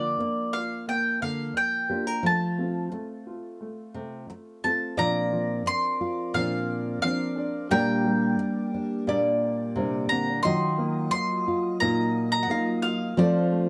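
Acoustic folk for a duo or small band at 88 BPM in Bb major, this hopeful, straight-feel 4/4 piece opens with a bright, double-strung mandolin carrying the melody up front over full-bodied, thumb-plucked nylon-string guitar accompaniment, finger squeak audible, while a boxy upright piano adds arpeggios beneath. At 5.0 seconds the harmony moves through Bbadd9, Gm/Bb and a colorful Ebmadd9 as a metallic, nasal lap resonator guitar enters with a slide second line and a soft, flute-like tonewheel organ holds sustained chords through a slow rotary speaker, its key click just audible. Close, detailed microphones and light reverb keep the sound intimate, and the recording is cut from a longer piece.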